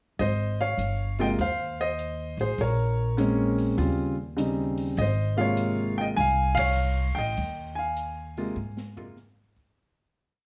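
Jazz piano trio in Ab major at 100 BPM with a relaxed swing, where a clear concert grand piano carries a motif-based melody of call phrases over syncopated drop2 comping, a woody pizzicato upright bass plays a two-feel line up front, and a polished big-band drum kit keeps time on the hi-hat with dark cymbals and a punchy kick, moving through Ab6, Bbm9, Eb13 and Ab69 in a small room before a band accent at 6.5 seconds, a fade-out from 7.4 seconds and a drum fill at 8.6 seconds.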